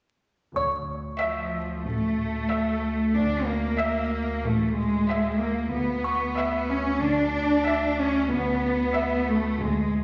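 Tense and ominous, this cinematic suspense cue moves at 93 BPM in 4/4, opening at 0.6 seconds on a deep, saturated sub bass drone and a background chamber double bass section beneath a delicate, slightly out-of-tune music box that tinkles until 7.9 seconds. From 1.2 seconds a lush, vibrato-rich cello section sits up front while a smooth violin section carries a high melody on E5, the harmony shifting from Dsus2 to E5/D at 5.7 seconds. A scoring stage reverb and a layer of vinyl crackle give this fragment of a longer piece a haunted, aged sheen.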